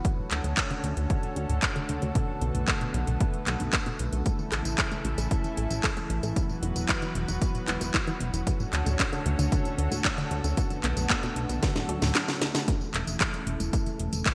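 A punchy, tape-warm analog kick sits up front in this nostalgic, melodramatic italo disco excerpt, driving a straight 4/4 at 114 BPM. Beside it, a layered house drum kit of handclaps, metallic hi-hats, a cracking snare and tambourine carries gated reverb and the roomy grit of a small-room re-recording. A dark, glossy chorused synth bass mixes pulse and sawtooth tones with ring-modulated, wave-folded edges, while a thick, warbling pad of detuned sawtooth and square voices holds bright sustained chords through Dmaj7, Bm7, A and Esus2. Underneath, a very quiet, detuned sawtooth pluck spins arpeggios under a filter sweep that runs until 12.7 seconds, while a drum fill arrives at 11.6 seconds. The kick drops out at 12.2 seconds before the passage settles on A/E, all framed by a moderate plate reverb and a shiny 1980s-style digital production.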